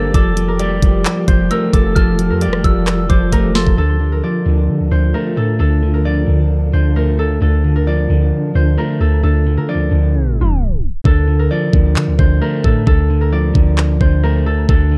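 This is a melancholic, brooding trap-style hip hop piece in D minor at 132 BPM with a half-time feel. A ringing, fingerpicked concert harp carries the melody through a low-pass filter and digital delay. Beneath it sit a slightly broken-up electric guitar, dark and up front, and a deep, boomy, sine-like 808 bass anchoring the low end. Over the opening Fadd9, a soft, pure FM bell with chorus, phaser and delay adds a gentle second line, while a trap kit punches through with a knocking kick, sharp snare, bright hats, claps, rim clicks and a short fill; both bell and drums stop at 3.8 seconds as the harmony settles on Dm. A cloudy, evolving granular pad hovers in the background with its own reverb until a tape stop at 10.1 seconds, and it ends as the drums return at 11.1 seconds with the hi-hats muted. The production is dry and shadowy, with the bass and drums pressed forward.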